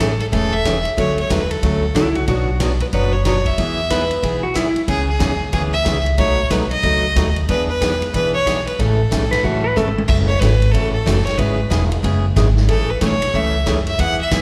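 A lively swing feel at 184 BPM drives this playful western swing country cut in A major, taken from a longer piece and heard as a live gig through the venue's PA with recital hall reverb. A clear, smooth fiddle carries the melody with light vibrato over a bright, full-bodied picked acoustic guitar, both touched with slapback echo. A woody, thumpy upright bass sits up front, while a distant, roomy big-band drum kit with a boomy kick and rolled-off top swings beneath, adding a drum fill at 9.8 seconds that leads into the second section. A clean, warm lap steel slides in briefly as a second line from 2.0 seconds and again near 9.3 seconds, also carrying slapback echo.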